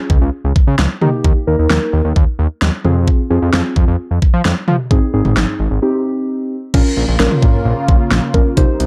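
Synth-pop at 131 BPM in a straight 4/4, this cool, driving cut from a longer piece sits in a dark production with light digital ambience. Muted, felt-like synth keys open the passage with an intimate, warbling vintage tone, chorus-treated and up front, moving through Db, Eb, Fm and Ab before reaching Cm. A fat analog bass with a thick, detuned sawtooth bite and quick, decaying notes drives underneath, joined by an electronic pop drum kit whose knocking kick, fat snare, hi-hat, crash and toms are overdriven and carry a small-room punch. A break arrives at 5.8 seconds, and at 6.7 seconds the harmony shifts to Bbm as a lush unison pad enters, its airy, detuned sawtooth layers swelling in with a slow attack under chorus and phaser. The result pairs a hard-hitting rhythm section with hazy, soft-edged keys and a shimmering pad.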